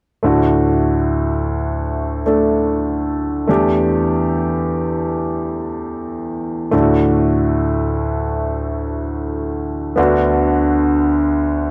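In free time, this brief pop fragment unfolds from 0.2 seconds to 11.7 seconds, cut from a longer piece. The sole part is a grand piano playing accompaniment in D major, ranging from D2 to A4, with a clear, intimate tone, audible action noise and long sustain that place it up front and present. The harmony moves from D to A7sus4/E at 3.5 seconds, back to D, and settles on Bm/D at 10.0 seconds, giving the passage an emotional yet hopeful mood. The piano sounds polished within a studio reverb, while the overall sound keeps the dry, close character of a 1970s-style studio recording.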